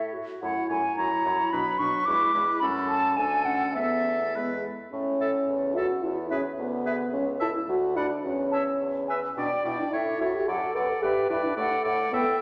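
Cheerful and lively, this quick classical-period movement for wind quintet in 2/4 has a silver concert flute carrying the melody with a pure, vibrato-touched tone, while a bright, close-miked oboe sings a second line just beneath it. A warm French horn and a smooth-topped clarinet fill in the accompaniment, and a clear bassoon with light vibrato anchors the bass. At 4.9 s the music moves into a new section, and the whole ensemble sits in the wet reverb of a recital hall in this brief cut from a longer piece.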